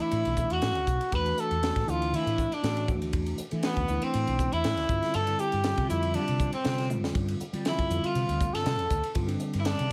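Electric jazz fusion with a nocturnal, driving mood, cut from a longer piece at 120 BPM in 4/4 with a light sixteenth-note swing, moving from E9sus4 to G9sus4 at 4.9 seconds. A dark, breathy trumpet sits up front with the melody, with light vibrato and scooped notes, while a crunchy overdriven picked guitar carries a second line, a mellow tine electric piano supplies clean accompaniment through its built-in speakers, and a growly fretless bass runs through analog chorus. A crisp drum kit with a high-tuned snare, tight kick, hi-hat, ride and toms pumps in a small room and plays a fill at 6.9 seconds, all under light reverb.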